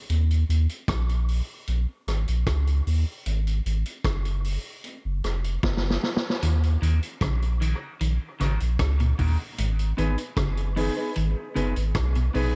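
Hypnotic and deep, this dub reggae passage, cut from a longer piece, moves at an unhurried straight four with a small room ambience and an echo-heavy mix. A round, sine-like sub bass sits up front from the first moments, its fast attack and sustained notes anchoring the low end alongside a vintage acoustic drum kit of hi-hat, kick, rim click and snare, heard with a punchy kick, a medium-tuned snare and a rolled-off top. The opening stretch is a break that closes with a drum fill from 5.6 to 6.4 seconds. At 6.4 seconds a dark, clean electric guitar enters in the background with picked arpeggios soaked in dub echo, and a mellow fingered electric guitar joins at 6.8 seconds with accompaniment treated by subtle chorus, a high-pass filter and more dub echo. The harmony drifts through Eb5 and Fm before settling on Ebm and Abm, keeping the groove deep and trance-like.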